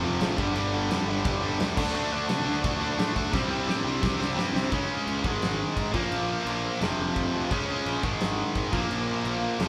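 A straight 4/4 pulse at 173 BPM drives this rowdy, upbeat punk rock excerpt, with a big rock drum kit joining at 0.2 s: the kit is dark and smooth, with a fat snare, punchy kick and crash cymbal, and it plays a fill from 3.3 s before dropping into a half-time feel at 4.7 s. An up-front, tight distorted guitar plays the riff with a bright, picked edge, alongside two overdriven electric guitars, one of them double-tracked, sitting in the background, and a growly fuzz-laden picked bass. They move through G5, D5 and C5 power chords, then shift to a Db5, Ab5, Bb5 and F5 pattern, all captured as a band playing live in one room with light reverb.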